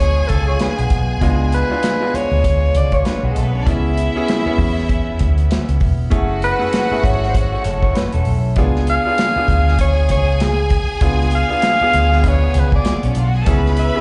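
This sounds like a live club set heard through the venue's PA, with a roomy club reverb and a dulled top end that gives the whole mix a soft haze. It is a fragment of a longer piece of lush, romantic 1970s-style soul at 98 BPM in 4/4, with a gentle sixteenth-note swing and harmony that moves from C#7b9 through C#m7 and F#m7 before returning. An up-front alto saxophone carries the melody in a clear, jazzy voice, with light vibrato, breathy subtone, scooped notes and a slapback echo. A distant chamber violin section bowed with vibrato plays a second line behind it, also with slapback echo. A brilliant, long-sustaining grand piano supplies the accompaniment, and a round, punchy foam-muted electric bass sits dark and up front beneath it. The drum kit enters at 0.3 seconds with a tight kick, a medium-tuned snare and hi-hat in a smooth, rolled-off small-room sound, and at 0.5 seconds a slightly broken-up, lo-fi electric guitar joins with a picked riff carrying spring reverb and slapback echo.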